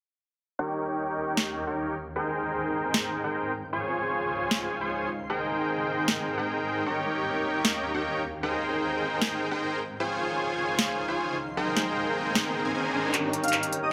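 A huge, detuned supersaw riff leads this bright, euphoric half-time future bass passage, filter-swept with tape echo over a shimmering, ethereal pad, while a crisp, overdriven trap kit of sharp snare, hi-hats and handclaps sits up front, a background riser builds from 11.3 seconds into a drum fill at 13.1 seconds, and an airy, dreamy lead melody appears only at 13.4 seconds, all in a moderate digital room reverb as the Abmaj9, Dbmaj7 and Eb7 chords cycle.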